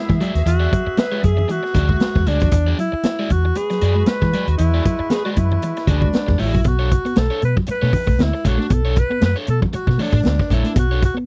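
A breathy alto saxophone opens this sly, cool funk cut at 116 BPM, carrying the melody in B dorian with scooped notes, soft attack and an intimate, whispered vibrato, while a tight, punchy horn section plays a second line through tape echo until 6.4 seconds. Underneath, a vintage muted fingered bass sits up front with a dark, round, foam-muted tone, joined by a vintage drum kit whose punchy kick, medium-tuned snare and hi-hat have a rolled-off top and a slight swing on the sixteenths. A crunchy, overdriven picked guitar supplies accompaniment, and a mellow, clean electric guitar plays a low riff in the background. Thick-skinned, damped congas, tuned high, add percussion from further back. The harmony moves from E9 to Bm9 at 6.7 seconds, and the whole thing has a dry, close 1970s studio sound, cut from a longer piece.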